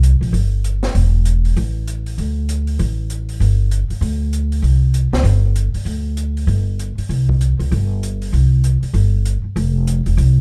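Relaxed and warm, this brief cut from a longer jazz piano trio piece swings easily in 4/4 with a lilting eighth-note feel. The upright bass sits up front, its plucked steel strings giving a woody tone as it moves through a low register from E1 to D2. Behind it, an acoustic drum kit recorded in a studio room sits well back in the mix, with hi-hat, a high-tuned snare and a boomy kick. Both parts play from the opening moment to around 10 seconds, across two passages of the same theme, the second arriving at 7.1 seconds. The production is dark, warm and dry, with little reverb.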